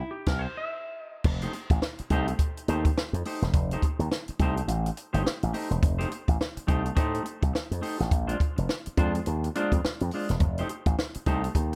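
A bright, punchy slap bass run through an envelope filter drives this gritty, funky fragment at 105 BPM, with a 16th-note swing in 4/4. A clean, twangy electric guitar with spring and plate reverb opens with a solo over a C chord and a band accent, joined at 0.3 seconds by the bass and a compact cocktail drum kit with a punchy kick, high-tuned snare, dark cymbals and hi-hat in a tight booth. From 1.2 seconds the groove settles on rootless F9, moves to Bb9 at 8.1 seconds, then returns to F9, in a dry, up-front mix.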